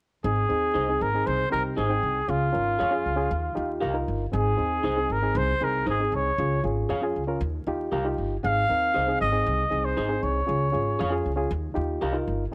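A straight 4/4 soul groove at 117 BPM in Ab major, danceable and uplifting, cycles through Ab, Db and Ebadd9 with a woody pizzicato upright bass up front and a bright, barky reed electric piano, its own plate reverb, filling in briefly at 3.6 seconds. A mellow, vintage trumpet carries the melody in jazz style, with vibrato and scooped notes, until 11.2 seconds, while a slightly broken-up, lo-fi electric guitar adds picked stabs. The cut from a longer piece sits in a moderate studio room with vinyl crackle beneath it.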